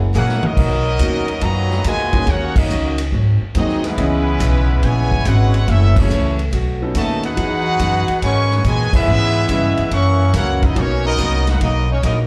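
A bright, tight trumpet section carries the melody through this brassy, energetic stretch of big band swing, its light vibrato given a slapback echo and a present edge over a brilliant, smooth-topped trombone section playing a second line with the same echo. A swinging drum kit opens with a fill before the band settles in, its dark cymbals, medium-tuned snare and punchy kick sounding distant and roomy, while the ensemble hits accents at 2.5, 5.9 and 8.9 seconds. Up front, a woody pizzicato upright bass anchors the harmony as it moves through jazzy major-seventh and minor-seventh changes. Further back sit a smooth, vintage grand piano and a picked dreadnought acoustic guitar, its finger squeaks audible, with a very quiet saxophone section adding sustained, vibrato-laden chords only in the first half-second. The whole cut sounds like a live gig heard through a club PA, wrapped in small-room ambience and club reverb, and it is taken from a longer piece.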